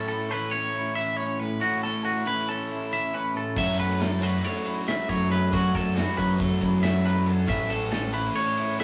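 A rough rehearsal-room recording with warm saturation and a small room's reverb carries this intricate, wistful math rock and midwest emo fragment in 9/8 at 275 BPM in A major, where a twangy, up-front electric guitar spins clean arpeggios over a compressed twelve-string electric guitar and a bright, double-tracked overdriven electric guitar riff, the harmony moving from A6 to F#m7 at 3.6 s as a growling, punchy fingered electric bass with overdrive and a loose indie drum kit with dark cymbals, a medium-tuned snare and a pumping room sound enter, the bass stopping at 8.3 s.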